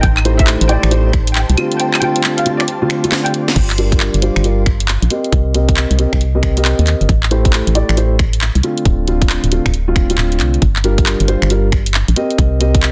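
A swung two-step UK garage groove bounces on a tight, layered electronic kick and an up-front garage kit of hi-hat, claves, finger snaps, handclaps, crash cymbal and a cracking, softly clipped snare, with a drum fill closing the opening drop. A hollow, organ-like FM bass with a fast, decaying attack sits up front beside dark, boxy baby grand piano stabs, low-pass filtered and delayed, with audible action noise and a filter sweep from 3.6 seconds onward. In the background, a reedy chamber violin section with gut-string tone, light vibrato, 12-bit sampler grit and dub echo carries the soulful melody until 3.4 seconds, while a blurred, detuned granular pad with sidechain pumping lingers until 3.6 seconds, all within a dense, heavily limited modern master.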